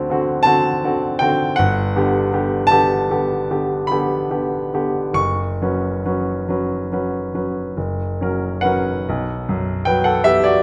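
A warm baby grand piano sits up front with a natural, short-sustained tone, playing a yearning, mournful romantic nocturne in 9/8 with free rubato. Its harmonies drift through seventh chords and a suspended chord before settling at 9.1 seconds, where a new section begins, and the part ranges from deep bass notes up into the high treble. A wet recital-hall reverb surrounds the solo, and the passage is cut from a longer piece.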